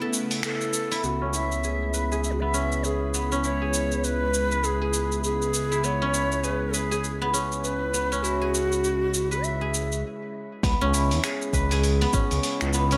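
Meditative and earthy, this organic downtempo excerpt swings gently as a silvery, fingerpicked guzheng plays arpeggios through a low-pass filter sweep and delay over a tense, string-like bowed drone and a smooth, saturated synth bass that both pump with sidechain, while a gritty, tape-toned sampler kit of cabasa, finger snaps and hi-hat plays, a breathy cedar flute carries the melody with delay until a stop at 10.0 seconds, a glassy, very quiet harmonics texture drifts in, and an overdriven electronic kick enters at 10.6 seconds, in a lush hall.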